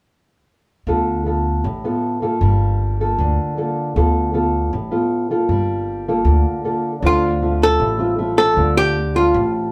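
Wistful and smooth, this bossa nova fragment opens at 0.9 seconds with a classical nylon-string guitar, thumb-plucked with audible finger squeak, over a woody, growly pizzicato upright bass, both up front as the harmony alternates between Dm6 and Gm9. At 7.0 seconds a new section begins on Dm7 as an intimate baby grand piano with audible action noise sits in the background, and from 7.1 seconds a dark, clean, compressed hollow-body archtop guitar carries the melody up front. The band plays live in one room, with moderate studio reverb.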